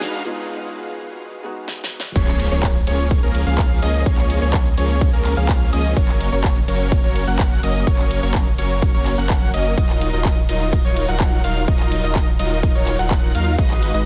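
Euphoric and anthemic, this festival progressive house excerpt in Eb minor moves at 126 BPM, opening on a brief build-up where a soft, felt-muted upright piano with audible action noise, a very quiet riser, a filter sweep and a drum fill sit beneath a thick, wave-folded unison lead playing arpeggios and huge, lush supersaw chords, both pumping with dub echo. At 2.2 seconds the drop lands with an impact, bringing in a deep, saturated sub bass and a punchy, up-front electronic kick alongside the big-room kit's huge snare, crisp hats, claps, shaker and cymbals, as the chords move from Db6 through Gb to Ebmadd9. The dense, heavily limited master keeps the sound dry and close.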